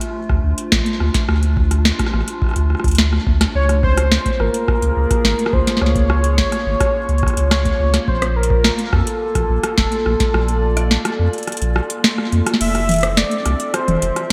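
A booming, overdriven analog drum machine with crisp snare, metallic hats and gated reverb drives this wistful, glitchy IDM excerpt at 106 BPM, joined at 0.3 seconds by a deep electronic kick that drops away at 10.3 seconds and a round, up-front sine sub bass, while a warbling, detuned tape-like pad holds nostalgic chords moving from Dm7 through Db6 and Bbmaj7 to Fmaj7, and a velvety synth lead with chorus and vibrato enters at 3.6 seconds, the mix set in a plate reverb with a bright 1980s-style digital sheen.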